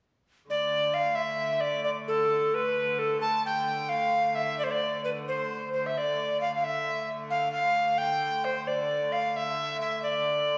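A bright, reedy tenor recorder with an airy chiff carries the melody up front from 0.5 to 10.6 seconds over a softer, nasal hurdy-gurdy drone in this driving, mysterious medieval dance in D dorian, moving in 6/8 at 88 BPM and set in a church-like hall with a lingering reverb.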